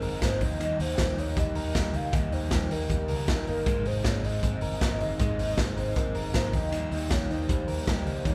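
A boomy, gritty garage drum kit sits up front in a small, pumping room, driving this breezy, nostalgic stretch of jangly indie pop at 157 BPM in straight 4/4 over a simple Eb to Abadd9 and back to Eb progression. A warbling, detuned synth lead with chorus and vibrato carries the soft-edged melody, while an overdriven garage guitar, a bright, scooped clean electric guitar picking arpeggios, and a dark, round, foam-muted fingered bass fill out the band. At 3.7 seconds a hollow, flute-like pad enters very quietly with sustained chords, all under a light reverb.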